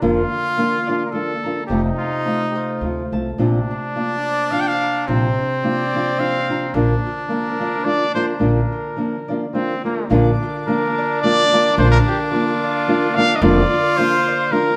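A lightly swung three-four with a rubato feel carries this festive, romantic mariachi fragment, where a clear, classical trumpet with light vibrato sings the melody up front from 0.6 seconds over a warm second trumpet line, thumb-plucked nylon-string guitar with audible finger squeak, ringing fingerpicked Celtic harp arpeggios and a woody, growly pizzicato upright bass, until a dark, lush bowed violin section enters in the background with soft-edged sustained chords at 10.1 seconds, the band sounding live together in a wet stone room.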